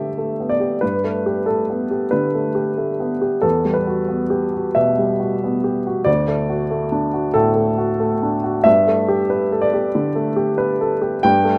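A rough home-demo sound with light reverb and a small-room ambience frames this peaceful, intimate fragment of neoclassical minimalist piano in G major, taken at a rubato 92 BPM in 4/4. A single upright piano, woody and up front with audible action noise, plays throughout the 11.6 seconds across a range from D2 to G5. Its harmony moves from Gadd9 to Emadd9 at 3.4 seconds, then to D, and settles back on Gadd9 at 8.7 seconds.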